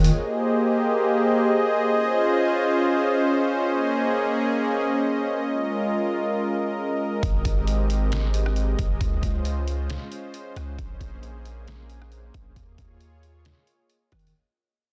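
A smooth, detuned sawtooth pad with chorus and a slow attack carries this blissful, floating cloud-rap excerpt in Ab major, holding sustained chords through a cycle of Abmaj9, Dbmaj9, Bbm11 and Eb9sus4. After a brief sound at the very start, a deep, sine-toned 808-style bass with long, decaying notes returns at 7.2 s together with a muffled, pitched-down, tape-warm sampler drum kit of thumpy kick, medium-tuned snare, rim click and hi-hat in a half-time feel at 135 BPM. Light reverb and digital ambience surround the dense, heavily limited master, which fades out from 1.5 s onward.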